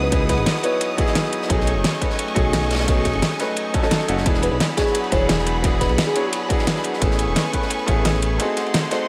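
Opening on an up-front, brilliant grand piano with dub echo, lush, distant bowed strings pumping under sidechain, a smooth sawtooth synth bass and a sparkling, bell-like FM electric piano melody with chorus that returns at 4.4 seconds, this rolling, dreamy liquid drum and bass excerpt at 174 BPM moves from C#m11 through B13, E9 and Amaj9 to G#7b9 over a punchy electronic kick, a pop kit with fat snare and metallic hats, and a gritty, saturated breakbeat kit with dark, rolled-off cymbals, set in a light small-room reverb, with the kick dropping out at 7.9 seconds.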